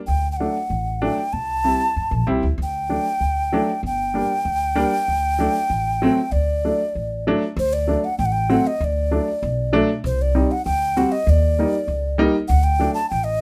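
A straight 2/4 pulse at 97 BPM drives this soulful, bittersweet klezmer fragment in D phrygian dominant, cut from a longer piece. A breathy alto ocarina carries the melody up front, its clay tone tongued and shaded with vibrato, with lifted highs that let it sing between C5 and A5. Beneath it, a pizzicato upright bass on steel strings gives a thumpy, woody foundation from G1 to G2, while a slightly detuned upright piano, entering at 0.4 seconds, adds present, short-sustained accompaniment in the middle register. The harmony moves from D through C and Gm, then shifts after 7.6 seconds into a second section that passes through Cm and Eb before returning to D. Light reverb gives the trio a gentle sense of space.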